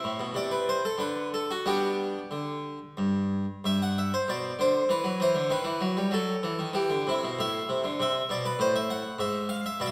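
A wet, reverberant scoring stage surrounds an up-front solo harpsichord, with a faint mains hum beneath. In this flowing, grave passage cut from a longer baroque-style suite movement, the Flemish-style instrument, with its two sets of strings, sounds airy, plucked and full across a span from G2 to F#5. It moves in a rubato 3/4 at roughly 88-101 BPM, tuned to A4 = 441 Hz, and turns from G major toward E minor at 3.6 s, passing through B7/D# and Am before closing on a G#m6 chord at 9.2 s.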